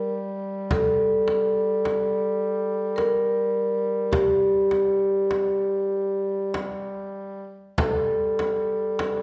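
A moderate recital-hall reverb surrounds this brief, solemn and longing Caucasian folk lament in G minor, moving in a rubato 3/4 around 48-53 BPM, where a close, up-front vibraphone played with soft mallets and its motor off carries a ringing, metallic melody between G4 and Bb4 over a smooth-topped, mellow duduk drone on G3, joined at 0.7 seconds by a frame drum struck with hard hands.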